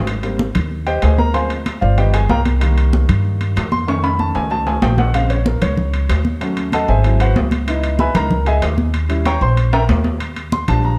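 A baby grand piano and upright bass open this lively, danceable Afro-Cuban jazz excerpt in Ab major at a brisk 190 BPM in straight 4/4. The piano takes the solo from the start until 10.2 seconds, with an intimate, natural tone, short sustain and audible action noise. It sits up front alongside the woody, pizzicato bass on steel strings. Bright, damped, high-tuned congas with a thin skin enter almost at once, recorded close, and vintage, band-limited timbales add a ringing metal shell. Fills arrive at 3.9 and 9.7 seconds as the harmony moves through rich extended and altered chords, from Abmaj7 through Dm7b5, G7alt and Bbm9 toward Eb7b9 and Ebmaj7. Light reverb and a dark, warm production give the whole a snug, dance-floor glow.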